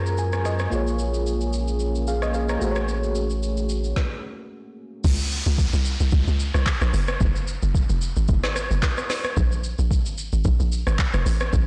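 A tight, percussive log drum bass with a fast, decaying FM attack takes over at 5.0 s for the drop of this soulful, relaxed amapiano cut at 111 BPM, joined by a falling electronic downlifter as a smooth R&B drum kit with a soft kick, woody snare, shaker and hand claps keeps a swung groove. Before that, a warbling vintage FM electric piano with tremolo opens on a fill and carries Gbmaj9 and Bbm7 chords over a deep, moody pad with chorus, sidechain pumping and reverb and a punchy sine sub bass, while a very quiet, round struck synth lead sounds only briefly at the very start. The piano, pad and sub bass drop away for a stop at 4.0 s. The overdriven, blown-out mix sits dry and up front, with the drums carrying a tape-like, roomy character.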